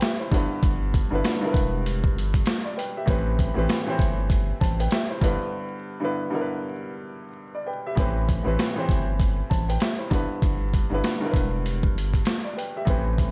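A boom-bap hip-hop groove at 98 BPM in 4/4, swung at 60% on the sixteenths, is driven by a gritty, compressed sampler-style drum kit with a thumpy kick, high-tuned snare and hi-hat, re-recorded in a large room yet sitting up front. The mood is dark and tough, and the piece is cut from a longer track, with a break between 5.5 and 8.0 seconds before a new section begins at 8.0 seconds. An intimate, woody upright piano with audible action noise and short sustain carries the accompaniment from G2 to A5, its vintage tone shaded by cassette tape and filtered at both ends. A deep, thick, saturated sine sub bass enters at 0.3 seconds, holding sustained notes between E1 and A1 under the chords. The harmony moves through Em7, Am9 and Em7/G, then returns to Am9 and Em7, all in a tuning of A4 = 443 Hz. Vinyl crackle hangs over the mix as a digital ambience.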